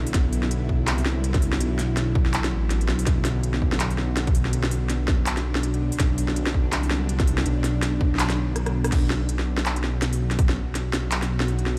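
A swung, half-time drum and bass groove drives this dark, heavy excerpt, with a hard-clipped electronic kick and a produced kit of woody snare, crisp hi-hats, handclaps, rim clicks and crash cymbal, the kit sitting up front, and a short drum fill at 8.6 seconds before the kick drops out at 10.5 seconds. Alongside them a deep, rumbling detuned sawtooth bass, also up front, holds a beating, sustained low line on B minor. Far in the background a tense, string-like drone sustains chords with vibrato, ring-modulated grit, its own reverb and sidechain pumping, all set in a large studio ambience.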